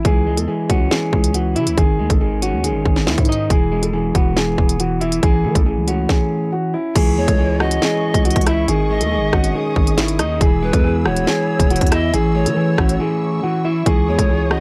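A dark, mellow baby grand piano carries the melody over a slightly broken-up electric guitar, a growling, buzzy 808-style bass and an up-front drill kit with a hard-clipped kick, sharp snare and crisp hats, setting an ominous half-time drill groove at 139 BPM in C# minor. After a stop at 6.1 seconds, a lush, woody string section enters in the background with sustained chords at 7.0 seconds, and a breathy pan flute with analog delay adds a distant second line from 7.2 seconds before a brief break. The sound is dry and gritty, with little reverb, and this is cut from a longer piece.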